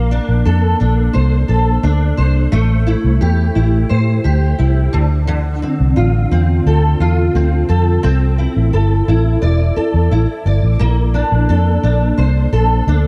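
A full-bodied picked steel-string acoustic guitar, colored by ensemble chorus and vibrato with audible finger squeak, opens together with a dark, round, foam-muted vintage electric bass up front, setting a laid-back, sunny indie and bedroom pop feel at 87 BPM in straight 4/4 that moves through Bbmaj9, Am7, Dm7 and C69 before returning to Bbmaj9, set in light reverb and small-room ambience in this 13.1-second cut from a longer piece.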